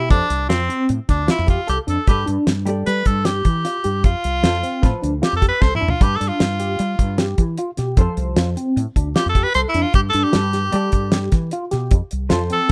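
Bright and driving, this short cut from a longer progressive instrumental moves in an uneven 5/4 with a straight feel, its chords alternating between F and G shapes. An edgy tenor saxophone with light vibrato takes the lead as a solo, up front, over bright tine electric piano arpeggios coloured by phaser, a woody, round fretless bass with lush chorus, and a dark, compressed hollow-body jazz guitar, double-tracked, in accompaniment. A damped 70s drum kit with a fat snare and tight kick sits forward, fitting in a fill from 5.6 to 6.0 seconds, all in small-room ambience with the rough feel of a home demo mix.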